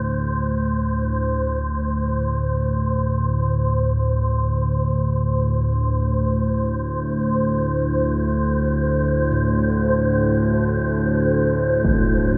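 A warbling, vintage analog drone with chorus and a filter sweep sits up front in this vast, ominous dark ambient piece, joined by an airy, wind-like tuned noise texture, very quiet bronze gamelan-type bossed gongs playing soft arpeggios at the start and again from 9.3 seconds, and a huge, bright impact at 11.8 seconds, in a dreamy mix soaked in huge reverb.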